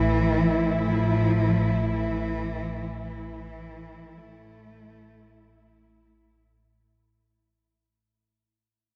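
A single expressive cello, bowed with vibrato and portamento and trailed by tape echo, sings a brief melody over a lush cello section's sustained chords and a detuned sawtooth analog drone with subtle chorus and a filter sweep, the whole cavernous, unsettling dark ambient fragment steeped in cathedral reverb as it fades out over 6.5 seconds.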